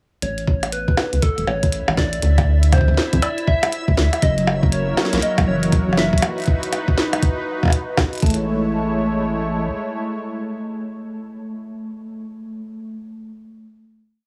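A swung 120 BPM IDM groove in A lydian, glitchy and wistful, rides an overdriven, broken electronic kick and a clicky, glitched drum kit with tiny snare and percussion blips beneath a rubbery, wave-folded square bass line, while a round FM synth lead with chorus and dub echo wanders freely over chords that settle on Amaj7, a reversed granular texture holds a dreamy high note in the background from 1.8 seconds, a detuned sawtooth pad with chorus, tremolo and sidechain pumping arrives at 4.2 seconds, and a tine electric piano with 12-bit sampler grit loops an 11-step pattern that drifts against the bar and carries on alone until 14.3 seconds in a digital ambience.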